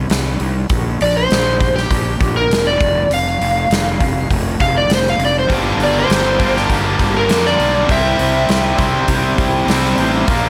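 A studio-ambient, up-front sound frames this gritty, brooding blues rock power trio excerpt with a southern rock lean, moving at 100 BPM in a straight 4/4. A growly fuzz bass, fingered and overdriven, and a huge arena drum kit with a punchy kick, medium-tuned snare and hi-hat in a big natural room carry the groove from the opening second. At 1.0 s an overdriven slide guitar played with fingerpicks takes the melody in a warm upper register, weaving over a start that moves through Edim and F5. At 5.5 s the harmony shifts to Gm, and a bright, double-tracked distorted guitar riff enters, picked and set forward in the mix. Alongside it, a thick, gritty tonewheel organ sits very quiet underneath with sustained chords through a slow rotary speaker as the progression turns to C before the cut.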